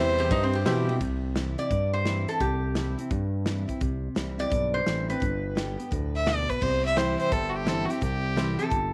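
A bright, metallic lap resonator guitar, played with fingerpicks and a slide, carries this nostalgic, down-home honky-tonk excerpt, taking a steel-bar solo from 1.0 to 6.6 seconds over a swung 171 BPM beat in C major. A clear, nasal fiddle with light vibrato and an airy bow states the melody at the start and returns near the close, while a full-bodied, picked dreadnought acoustic guitar plays beneath the whole passage with audible finger squeak. A smooth, mellow synth bass sits up front, its sawtooth-and-triangle tone touched by ring modulation and vibrato, and a polished acoustic drum kit with a punchy kick and medium-tuned snare adds hi-hat, ride and crash. A jangly, vintage tack piano and a clean, compressed pedal steel with volume swells appear only briefly at the edges, both very quiet. The harmony moves from C to G and back, and light reverb gives the band a small-room, classic country feel.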